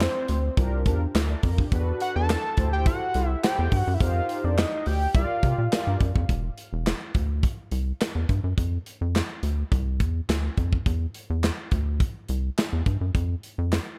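This excerpt of early-eighties boogie funk opens with all four parts at once: a fat analog lead carrying the melody with tape echo, mellow synth brass chords shimmering with chorus, a rubbery square bass and a modern studio drum kit. At 105 BPM in a straight 4/4, the mood is funky and late-night, with a dark production and a studio room around the kit. The lead's sawtooth-and-square tone has a sub octave and vibrato, while the round, detuned brass sits lower in the mix beneath it over suspended ninth chords. At 6.0 seconds the lead and brass stop, leaving the hollow, bouncy bass with its resonant filter pluck and the airy, polished drums, with punchy kick, medium-tuned snare, hi-hat and handclaps, to carry the second section. Bass and drums play on alone through chords such as D9sus4 and Dm until about 13.9 seconds.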